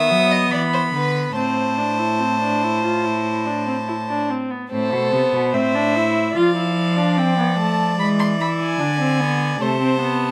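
Lightly reverberant and steeped in period gut-string tone, this joyful, elegant passage from a longer baroque-style fugue for string quartet sets a reedy first violin with light vibrato on the melody above a close second violin, a warm, up-front viola accompaniment and a nasal cello bass, all played by single bowed players through a change of section at 4.7 seconds.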